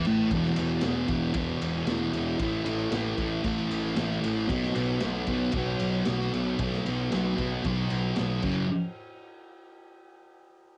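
Rowdy and swaggering, this garage rock excerpt at 114 BPM in a straight 4/4 has a thick, double-tracked fuzz guitar up front, churning a riff through E5, A5 and B5 power chords before landing on F#5 near 8.4 seconds, with a cassette-tape grit. Beneath it sit a growly overdriven bass and a raw, punchy drum kit of kick, snare, ride and crash, the kit pumping in a small room with a rolled-off top, and all three parts stop around 8.7 seconds. The home cassette sound is dry, with little reverb.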